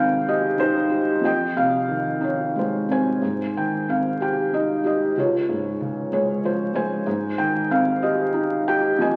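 Heard through the crackle of a very old 78 rpm record, this brief excerpt sits in a wet recital-hall reverb that lets each chord hang in the air. It is a lyrical piece of classical solo piano, tender and peaceful in mood, moving in 6/8 with a free, rubato feel. The only instrument is a felt-muted upright piano, placed up front so it sounds close and intimate, its tone soft and mellow. The harmony drifts from Abmaj7 to Fm7, back to Abmaj7, then to Dbmaj7 before returning home to Abmaj7 at 7.1 seconds. The playing spans from Db2 in the bass up to Ab5, and the whole passage lasts just 9.2 seconds, cut from a longer work.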